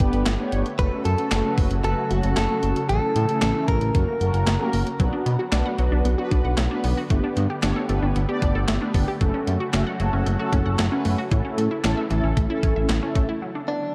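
An echo-heavy mix with a moderate spring reverb and lossy compression artefacts frames this melancholic, driving synth-pop excerpt in B minor at 114 BPM, where an up-front, thumpy 12-bit drum machine with handclaps, hi-hat and a medium-tuned snare sits beside a smooth, vibrato-tinged synth bass. Dark, detuned synth brass with chorus and phaser carries the accompaniment over a swirling, airy analog pad in the background, while a bright, clean, direct-recorded electric guitar picks the melody from 0.8 to 4.7 seconds. From 5.0 seconds a lush, warbling unison pluck enters with background arpeggios soaked in dub echo and shimmer reverb, as the chords cycle from Bm through Gadd9, F#m and A.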